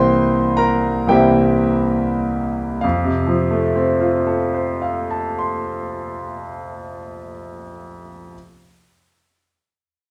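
A romantic classical character piece for solo bright grand piano, this lyrical, hopeful fragment cut from a longer work unfolds in 6/8 with rubato, its brilliant, open tone and long sustain ringing up front within a roomy studio reverb heard from further back, as the opening slows over a C7 chord before settling onto F at 2.8 seconds.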